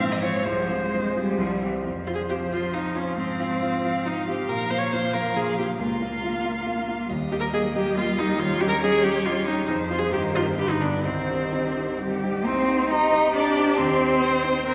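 Restless and dramatic, this short excerpt of a quick classical-period movement for piano quartet in 3/4 moves with a rubato feel as a distant violin carries the melody with vibrato and portamento over a cello second line, an intense, up-front viola with a smooth top, and a natural-toned baby grand piano, all bathed in the long, wet reverb of a church, with lossy compression artefacts and a faint mains hum.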